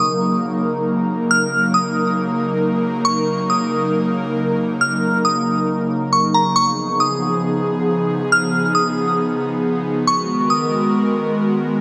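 Spacious and hazy, this half-time hip hop cut drifts in a lush hall reverb that gives every note a long, lingering tail. A glassy FM synth bell carries the melody high in its range, its crystalline, warbling tone colored by chorus, tremolo and tape echo until it falls silent at 10.9 seconds. Beneath it, an airy, breathy pad holds sustained chords with a slow attack and long release, its detuned, nasal character thickened by chorus. A mellow concert harp plays arpeggios at the very start, barely audible and gone by 2.6 seconds. The harmony moves from Ebm7 to Db9 and settles on Abm9 near the end of this short fragment cut from a longer piece.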